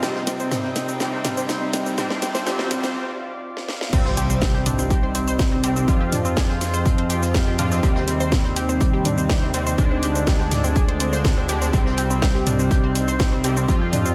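A punchy, tape-warm electronic kick lands up front at 3.9 s to drive this melancholic, dramatic melodic techno cut in C minor at 123 BPM, where a fat, nasal analog bass, edgy sync-sweep polysynth stabs with lush chorus and delay, delayed unison pluck arpeggios with a cassette-tape tint, and a deep, moody pad all pump to the sidechain over a house kit's cracking snare and a very quiet soul kit. A faint bowed-like drone and clear studio strings fill the opening seconds, while an electronic riser builds toward the drop and lands in an impact, all wrapped in a dreamy, reverb-soaked hall.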